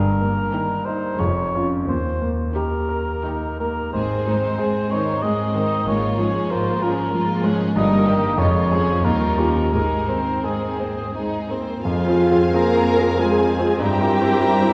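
Heard from further back in a concert hall, this lyrical, passionate classical passage sits in a wet reverberant space, cut from a longer piece in Ab major at a rubato 83-101 BPM in 3/4. A clear, open concert grand piano carries the melody up front with deep bass, while a mellow cor anglais sings a solo second line with light vibrato and a soft attack. Beneath them, a focused cello section and a smooth, even double bass section hold the bass, joined at 0.5 seconds by a lush, expressive violin section on a second line and a warm viola section in close accompaniment, all bowed with vibrato and set in the background. At 11.9 seconds the harmony turns toward F minor as a distant violin section takes up the melody, with an airy concert flute in straight tone and a dark, roomy clarinet adding second lines. A very quiet, tight French horn section adds sustained chords from 11.8 seconds, bringing a shadowed weight to the close.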